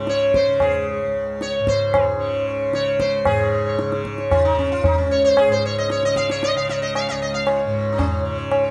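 Heard in a small room with moderate reverb, this meditative, devotional Hindustani classical fragment in 3/4 features a round, up-front sitar with buzzing sympathetic strings carrying the melody over a bright, softly plucked, shimmering tanpura drone, while a high-tuned, ringing tabla sits close and dry from 0.1 seconds, the music moving into a new section at 3.3 seconds.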